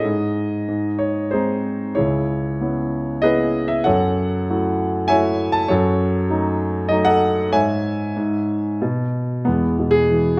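Classical solo piano in C# minor, this lyrical excerpt feels hopeful and relaxed, moving in a rubato 3/4 at around 88-100 BPM. A warm, natural-sounding grand piano sits up front, ranging from C#2 to A5 as it passes through G#, C#m7, F#m7, D#dim/F# and C#m/G# before settling on E at 9.5 seconds. A moderate recital hall reverb gives the instrument a gentle sense of space.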